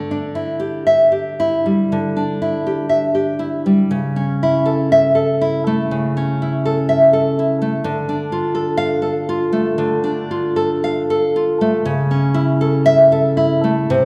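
The rhythm moves freely in 4/4, with the pulse stretching and relaxing as the passionate, intimate melody unfolds on a solo nylon-string guitar, fingerpicked and up front with a warm, classical voice. Cut from a longer romantic piece, this passage moves between a suspended opening chord, A over C sharp and D minor across about 14.1 seconds. A lush recital-hall reverb surrounds the guitar, giving it the resonant air of a church or concert hall.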